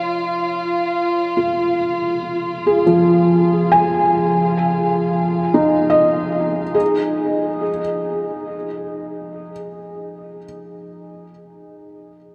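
A felt-muted upright piano, mellow, intimate and up front with tape echo, opens this reflective, melancholic ambient fragment with arpeggios over Fm7 alongside a dark, veiled con sordino violin section with light vibrato, which stops at 6.8 seconds as the harmony shifts to Ebsus4 and the piano carries on alone until 12.3 seconds, all suspended in a vast, echoing space.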